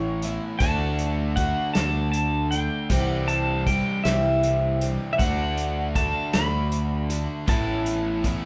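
A twangy pedal steel guitar leads this short hopeful excerpt in D major, carrying the melody high with fingerpicked, slide-played lines and volume swells over a picked, shimmering twelve-string acoustic and a dark, double-tracked overdriven electric guitar riff. A growly, up-front fingered bass sits beneath them from the start, and a loose indie drum kit joins at 0.2 s with hi-hat, a tight kick and a medium-tuned snare heard in a small room. The tempo is a slow 52 BPM in a straight 6/8, giving the folk rock and heartland rock feel an unhurried, rolling sway. The chords move from Aadd9 to D, C and back to D before returning to Aadd9 near 7.5 s. The band sounds as if playing live together in one room, wrapped in a wet studio reverb, with the octave-doubled, boxy sparkle of the twelve-string brightening a sound that feels open and warm.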